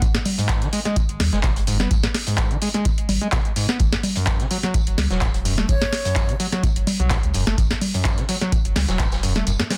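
A squelchy, gritty overdriven acid bass riff drives this trippy, raw acid house cut at 127 BPM, drenched in distortion, lush chorus and tape echo over a round sine sub bass that pumps with sidechain, a deep electronic kick, and an up-front booming analog drum machine with tonal snare, metallic hats, claps, congas and shaker, all swinging gently on the 16ths. A mid-forward vintage acoustic kit sits in the background with filtered, pumping hats and tambourine, while the harmony moves from G#7(no3) to F#7(no3) at 3.8 seconds. A breathy, unsteady jazz flute with vibrato briefly surfaces through analog delay at 5.7 seconds, and the kick drops out at 9.5 seconds in this dense, heavily limited mix with light reverb.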